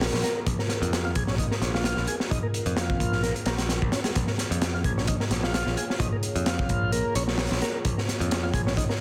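Breakbeat with a swaggering, gritty mood, cut from a longer piece and built on a crunchy, saturated drum kit with a tight kick and high-tuned snare that sits up front, while a bright, growly picked electric bass drives the low end. A tonewheel organ riff enters at 0.2 seconds, clean and smooth through a slow rotary speaker with tube saturation and tape echo. Beneath it, a moody analog pad holds sustained Bbm7 chords in the background, colored by chorus, phaser, vintage 12-bit sampler grit and sidechain pumping, all within a small room ambience and a dense, heavily limited modern master.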